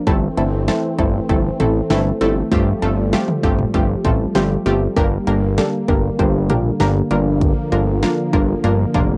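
A brassy, airy analog pad opens this short synth-pop excerpt, holding sustained chords with chorus and vibrato in the background, before a bright, detuned sawtooth pluck, a fat bass and a punchy electronic pop kit with a fat snare join at 0.1 seconds. The mood is driving and cool, with the round, evolving pluck and the filter-swept bass sitting up front over harmony that moves from Am/G through Fadd9/G and Gm to Bb/G. Light reverb and the cassette tape coloring on the pad, pluck and drums give it a home-recorded feel.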